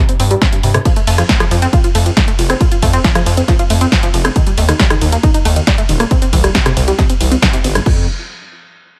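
Euphoric and uplifting, this trance fragment, cut from a longer piece, sits inside a drop that runs from the start to 7.9 seconds. A tight, detuned sawtooth synth plays driving, evolving arpeggios with chorus, tape echo and sidechain pumping, over a gritty, saturated bass that blends square, sawtooth and sine tones with oscillator sync and also pumps to the sidechain. A heavy electronic kick and an up-front, tape-colored techno kit with a punchy snare, hi-hat, ride, crash and rim click push the groove, the kit's hats and cymbals pumping as well, all set in a digital ambience.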